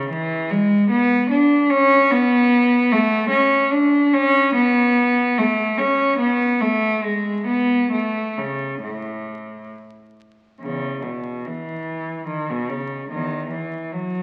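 A single bowed cello carries this serene, dance-like baroque-style suite movement alone, playing from 0.0 to 14.2 seconds. Its warm tone is shaded with vibrato and portamento, and the phrasing is expressive and freely rubato within a lilting triple metre, ranging from E2 up to D4. The instrument sits up front yet has a distant quality, wrapped in the lingering reverb of a recital hall. The opening phrase returns at 10.6 seconds, restating the same material before the fragment breaks off from the longer piece. Vinyl crackle from a very old 78 rpm record runs beneath the cello, lending the sound an aged, archival character.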